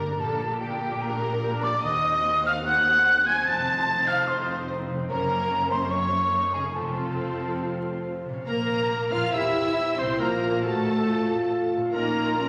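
An airy, mellow silver flute carries a second line over a lush bowed violin melody in this stormy, restless fragment of a fast romantic symphonic movement, running at 137-148 BPM in straight 4/4 and tuned to A4 = 441 Hz. Beneath them, a second violin line, smooth violas, expressive cellos, dark, woody double basses and a bright, ringing fingerpicked harp playing arpeggios fill out the dramatic texture. At 8.5 seconds a tight French horn section adds sustained chords while oboe and a clear, very quiet clarinet join with second lines, all set in a reverberant scoring stage with a layer of vinyl crackle.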